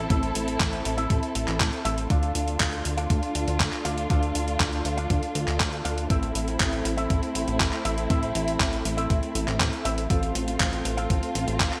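A dark, woody studio string section holds sustained chords under shimmer reverb, together with clean, picked stabs from an envelope-filtered electric guitar with digital delay and a glossy, chorused synth bass sitting up front in this nostalgic, bittersweet italo disco excerpt. At 0.1 seconds, a gritty, compressed sampler-style kit with handclaps, hi-hat and gated reverb enters alongside a thumpy electronic kick. The harmony moves from Am through Dm and back to Am before settling on F/A, all set in a lush hall with bright 1980s-style digital production.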